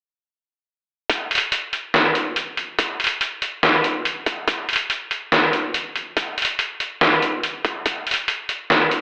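A half-time groove at 142 BPM with a 62% swing on the sixteenths drives this meditative, dark deep dubstep fragment, cut from a longer piece. A pitched-down, compressed, thumpy electronic kick and a gritty trip hop sampler-style kit of hi-hat and medium-tuned snare both enter at 1.1 seconds, up front and re-recorded in a large room. The kick drops out at 8.0 seconds while the kit carries on to 9.0, all set in a dreamy mix soaked in plate reverb with a telephone-like tone.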